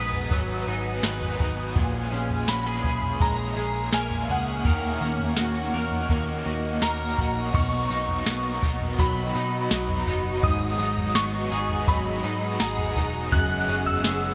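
A melancholic, ethereal dream pop excerpt in a straight 4/4, where a shimmering, warbling FM bell melody with ensemble chorus and digital delay floats over a blurred, evolving granular pad, twangy arpeggios from a slightly broken-up electric guitar, a bright, overdriven double-tracked garage guitar with tremolo, a dark, foam-muted picked bass and a soft, tape-warm analog rhythm box with deep kick, crisp snare, tambourine, toms and crash, all bathed in a lush 1.8-second hall reverb with bright 1980s-style digital sheen as the chords move from G#m7 through A#m7b5 and D#m7 to Bmaj7 at 7.5 seconds.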